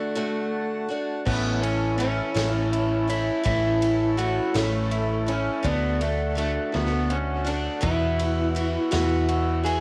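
A jangly, homespun cassette recording in a small room, this folk rock and heartland rock excerpt moves at a slow 55 BPM in a straight 6/8, with a slightly broken-up electric slide guitar, played with fingerpicks and carrying cassette-tape coloring, singing the melody over a bright, boxy parlour acoustic guitar and a reedy, breathing harmonium holding sustained chords in the background. At 1.3 seconds a lo-fi electric guitar riff through a small old amp with spring reverb joins from the back, alongside a round, dark hollow-body bass sitting up front and a natural country drum kit with a punchy kick, medium-tuned snare, ride and crash. The chords move from D to A, back to D and on to Esus2.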